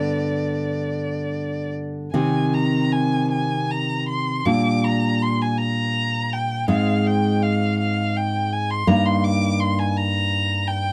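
A dry, close recording in a 1970s studio style, with little reverb, places both instruments up front in this short piece cut from a longer work. It is a solemn, melancholic romantic duo for violin and classical guitar in 12/8, moving slowly and freely at around 47-57 BPM in dotted quarters, tuned to A4 = 441 Hz. A single bowed violin carries the melody between D5 and D6, its rich tone shaped by vibrato and expressive portamento. Beneath it, the nylon-string guitar supplies a fingerpicked accompaniment from G2 to Eb4, bright and full-bodied with fresh strings, and finger squeak can be heard. The harmony moves from G through Abadd9/C, Gm/Bb and Ab6 before arriving on Eb/G at 8.9 seconds, with both parts sounding together throughout the 10.9 seconds.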